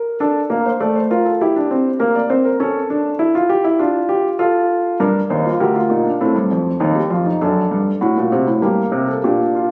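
In a straight 4/4 at 100 BPM, this solemn, serious baroque-style four-part fugue in G minor, cut from a longer piece, places a dark, mellow grand piano up front across a D2 to D5 range, moving from Dm through a rootless Em7b5 and A7/C#, back to Dm, then through Gm, Am7b5 and D/F# before arriving on Gm at 8.6 seconds, all heard through a wet recital hall reverb and captured on a phone amid club ambience.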